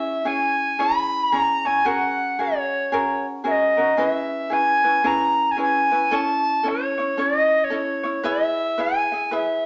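A pure, woody tenor recorder with a soft, chiffy attack and straight tone carries the melody up front over light, fingerpicked acoustic ukulele in this dreamy, sunny Hawaiian piece at 113 BPM with a swung 4/4 feel, moving through C#m, F#add9, C#m7, A and E in a wet, reverberant studio space across a brief 9.7-second cut from a longer performance.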